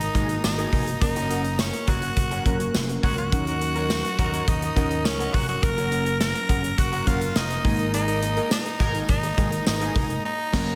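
A raspy, gritty tenor saxophone carries the melody up front with vibrato and forceful, close-miked punch in this romantic, uplifting 1980s-style pop excerpt at 104 BPM in F# major, its slapback echo set against glassy digital keys with chorus and a filter sweep, a round slap bass, and a punchy modern studio drum kit with bright cymbals and tambourine. A dreamy FM bell shimmers in the background as a second line, while a dark, lo-fi electric guitar riff also sits in the background, joined by a very quiet, distant horn section that stabs at 3.5 and 8.1 seconds. Lush hall reverb gives the whole an arena-sized sound over chords moving from G#sus2 through F# and D#m7, closing with a band accent at 10.2 seconds.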